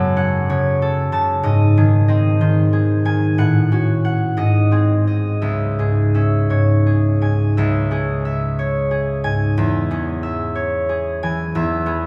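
Classical solo harp in a gentle, wistful C# minor, flowing in a rubato 6/8 at about 55-64 BPM (dotted quarters), with a single concert harp fingerpicking ringing, warm tones from C#2 to A5, up front in a wet church reverb, in a 12.1-second extract cut from a longer piece whose harmony drifts through F#m, G# and C#m.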